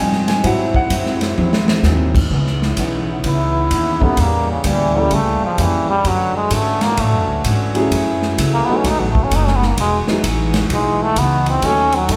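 A buzzy, breathy trombone with a metal mute carries the melody up front from 3.3 seconds in this sultry, dramatic big band swing excerpt at 128 BPM in C# minor, after an opening piano moment and a drum fill at 1.4 seconds, over a natural-sounding baby grand, a boxy picked steel-string acoustic guitar and a smooth-topped trombone section holding sustained chords in the background, a growly, woody pizzicato upright bass and an airy, polished drum kit with a punchy kick, all set in a wet recital hall reverb.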